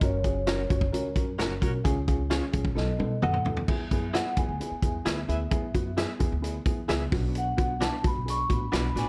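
This uptempo 1960s-style soul fragment moves at 131 BPM in a straight 4/4, with a warm, joyful mood. A soft-mallet vibraphone carries the melody and takes a solo in the opening bars, its airy, ringing tone shimmering with fast motor vibrato. A dark, slightly detuned upright piano with a boxy, woody character supports it, while a thumpy pizzicato upright bass anchors the low end. From 0.5 s a bright, twangy clean electric guitar adds compressed, picked stabs colored by tremolo. An up-front vintage drum kit with a punchy kick, dark cymbals and a rolled-off top plays a fill from 2.8 s that leads into the second section at 3.7 s, where the harmony settles into E mixolydian, moving from E to B minor. The whole mix has a dark, warm, small-room feel with light reverb.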